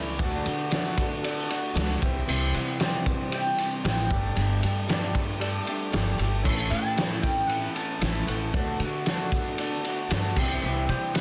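The sound is dense and heavily limited, with a moderate studio reverb, in this nostalgic folk rock and heartland rock excerpt at 115 BPM in a straight 4/4. Up front, a loose indie drum kit delivers a punchy kick, a fat snare and dark, rolled-off cymbals with a gritty, saturated edge. Beneath it, a woody upright bass plays pizzicato on steel strings, and a jingly tambourine sits in the background. A picked mandolin with doubled strings carries the melody through a slapback echo, set against a twangy, slightly broken-up electric guitar riff with spring reverb from a small old amp. Further back, a boxy swing-style acoustic guitar with fresh strings and audible finger squeak plays accompaniment, while a soft, flute-like tonewheel organ on a rotary speaker holds very quiet sustained chords. A clear, natural grand piano comes in at 0.2 seconds and steps forward with a fill from 5.4 to 6.5 seconds, as the chords move from D through C and Gsus2 to A and back to D and C, giving the whole a warm, nostalgic feel.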